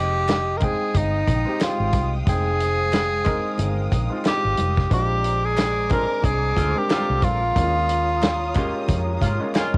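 A breathy, close-miked tenor saxophone carries the melody up front in this silky, cinematic excerpt of lush 1970s-style soul in F minor at 91 BPM, riding a swung 16th feel over a punchy, foam-muted electric bass, a dry soul drum kit with a medium-tuned snare, and very quiet congas and crisp handclaps entering at 0.3 seconds. An intimate baby grand piano with audible action noise, bowed strings in the background, and a ringing vibraphone with slow motor vibrato fill out the harmony as the chords move from Fm9 to Bb9 and Eb9sus4. A mellow, distant horn section adds tight stabs through analog delay from 5.9 seconds, and the piano closes with a fill at 8.9 seconds, all captured dry on a cassette home recording.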